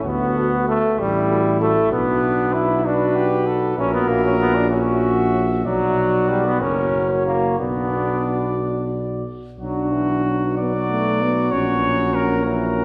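Classical brass quintet music in B minor, this triumphant excerpt moves in a rubato 6/8 at about 59-65 BPM: a smooth-topped cornet carries the melody over an up-front bass trombone line, while a brilliant, vintage-toned trombone sits forward in the accompaniment beside a French horn with light vibrato, and a trumpet plays a second line further in the background; these mellow voices, all but the trombone, are heard from further back in a reverberant scoring stage as the harmony moves from D through B minor and F#7/A#, shifting into a new section at 9.6 seconds.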